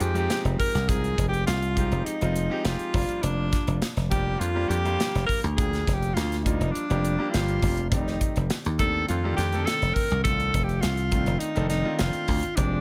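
A straight 4/4 groove at 102 BPM drives this funky, nocturnal slice of electric jazz fusion, cut from a longer piece and lasting about 12.8 seconds. The acoustic drum kit sits up front with a punchy kick, a medium-tuned snare and hi-hat, sounding polished and airy in a small room. Beside it, a dry, thumbed electric slap bass carries the low end with a bright, direct, foam-muted tone, also placed up front. Over this, a breathy alto saxophone takes the solo melody in an intimate, jazz-style voice, whispered and subtoned, with a soft attack and light vibrato set in plate reverb. A concert grand piano supplies accompaniment with a smooth, vintage character and deep bass, also bathed in plate reverb, as the harmony moves from Fm9 to Gm7/F at 2.9 seconds and on to F13 at 7.9 seconds.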